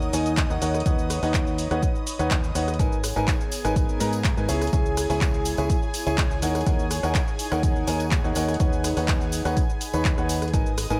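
This piano house excerpt feels soulful and energetic, riding a straight groove with a steady pulse. A clear, woody upright piano sits up front playing a riff with long sustain and a touch of delay, moving through minor-seventh and add-nine chords. Beneath it, a foam-muted fingered electric bass brings tube-saturated weight, while a punchy analog drum machine supplies cabasa, handclaps, hi-hat and rim click, joined at 0.4 seconds by an up-front electronic kick. In the background, a silky, bright analog string pad holds sustained chords with ensemble chorus, and a warbly, nostalgic tape-like pad adds a detuned, lo-fi haze with chorus and its own reverb. The strings, piano, bass and tape pad all pump with sidechain, and a compressed tambourine slips in quietly at 2.8 seconds, with light reverb rounding out the mix.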